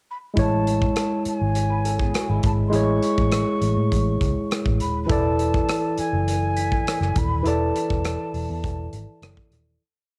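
A barky, lightly overdriven tine electric piano holds spread chords up front in this lush, smooth 1970s-style soul piece, with a breathy, distant jazz flute singing motif-based phrases above, a dark, foam-muted fingered bass carrying a melodic line with ghost notes and chromatic approach notes, a modern drum kit playing hi-hat, rim click and a punchy kick, a slightly broken-up guitar briefly adding short fills in sixths from 1.7 seconds, and a very quiet rubber-mallet glockenspiel scattering bell-like notes from 5.1 seconds as the cassette home recording fades out from 7.5 seconds.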